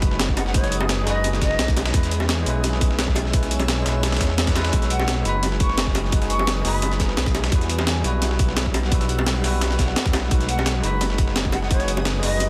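Uplifting and warm, this liquid drum and bass passage in B major runs at 172 BPM, with a deep, rumbling detuned saw bass up front beneath a tight electronic kick, a gritty, pitched-up jungle sampler-style kit, and a dusty soul sampler-style kit and round, low-tuned bongos sitting further back. A bell-like tine electric piano with 12-bit sampler grit and digital delay carries the accompaniment over an ethereal pad treated with chorus, phaser and sidechain pumping, moving through B6, E6 and Emadd9 chords. A mellow, distant concert flute with delay drifts in for brief phrases from 0.4, 4.9 and 10.5 seconds, all within a dense, heavily limited mix.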